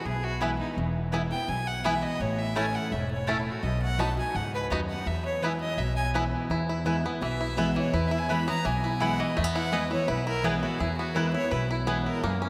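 A biting, up-front fiddle carries the melody from the first beat over bright, freshly strung picked acoustic guitar, joined almost at once by a growly, thumpy upright bass, in this driving, rustic bluegrass passage at 167 BPM in E major that shifts to E lydian at 6.5 s. From 0.4 s a twangy, fingerpicked banjo adds percussive arpeggios while a warm, double-strung mandolin places stabs in the background, and the band rings out in a vast, echoing cathedral reverb.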